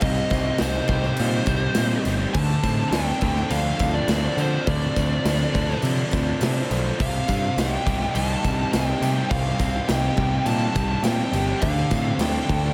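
Hazy and brooding, this shoegaze and dream pop excerpt moves at 103 BPM in a straight 4/4 in C dorian, drifting between Cm and Dm7 inside a dreamy mix soaked in a huge ambient reverb. A fuzzy lead guitar carries the melody through a diffuse ambient delay, while in the background a thick, dark fuzz guitar with subtle chorus and an overdriven guitar wrapped in reverse reverb play riffs, anchored by a growling, bright overdriven picked bass. A punchy, up-front acoustic rock kit with bright crash cymbals and a medium-tuned snare drives the piece, and a jingly, close and dry tambourine sits quietly behind it.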